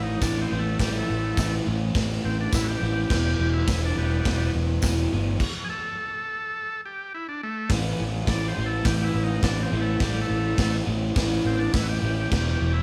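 A straight 4/4 beat at 104 BPM drives this menacing, raw garage rock piece, with a gritty, saturated drum kit up front and a boomy kick, a jingly tambourine in the background until 5.0 s, a punchy picked bass, a double-tracked crunchy guitar riff over A5 and Em, and a buzzy vintage combo organ melody with light vibrato and analog delay, set in a small room reverb and broken by a stop from 5.4 to 7.7 s.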